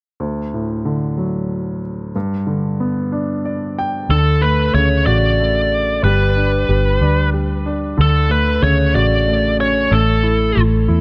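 A clear, polished baby grand piano opens this tender, heartfelt pop excerpt in D major, moving through a straight 6/8 at 62 BPM and closing its opening passage with a fill from 3.1 to 4.1 seconds. At 4.1 seconds a biting, overdriven lead guitar with delay takes the melody in a narrow upper range, while a dark, round, foam-muted electric bass enters with a punchy presence beneath it. The harmony moves between Dmaj7 and G before landing on an A5, all set in a studio reverb.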